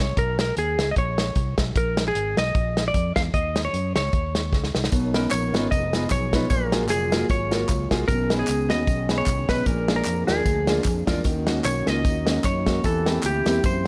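A semi-hollow electric guitar carries the melody up front, its clean, compressed, hollow-body tone giving this uptempo gospel excerpt a solemn yet fervent voice over a swung feel in four. A round, punchy fingered electric bass is there from the opening, and a soul drum kit joins at 0.2 seconds with a tight kick, a medium-tuned snare, hi-hat and a rolled-off top, sounding roomy. A drum fill at 4.5 seconds opens the way for a fuller band at 4.9 seconds, when a clear concert grand piano enters as accompaniment, with audible action noise, deep bass and a boxy character. At the same moment, a very quiet, flute-like tonewheel organ holds sustained chords with chorus vibrato, key click and a stopped rotary speaker, while a very quiet, warm French horn section adds classical-style sustained chords with light vibrato. Tambourine and handclaps, with egg shaker and group handclaps, sit close and dry, and the harmony moves through rich major-ninth and seventh colors under light reverb and studio ambience.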